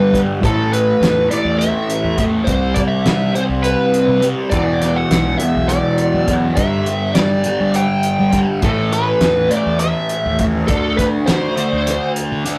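A double-tracked, up-front fuzz guitar riff drives this trippy, dark psychedelic rock excerpt in 7/8 at 204 BPM, alongside a fuzz lead melody with wah, a round, punchy overdriven fingered bass and a cloth-damped thuddy drum kit with a fat snare, moving through Asus2, C5, E5, G5 and D5 in a rough rehearsal-room sound with tube saturation and a small wet room reverb.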